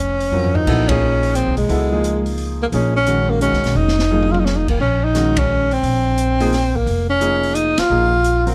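A swinging 3/4 pulse at 174 BPM drives this intense yet cool modal jazz passage in Bb minor, held on a single Bbm11 chord and cut from a longer piece. The upright bass sits up front with a woody, plucked tone on steel strings, while an airy, polished drum kit with dark cymbals, a medium-tuned snare and a boomy kick enters at 0.2 seconds and adds fills near 0.3 and 3.8 seconds. A breathy tenor saxophone leads the melody, close-miked and whispered, with soft attacks, vibrato and a plate reverb that keeps it intimate and mellow. A warm concert grand piano comps underneath, its deep bass and audible action noise giving it a natural presence. The band punches out several shared accents, and a light reverb surrounds the small-room sound.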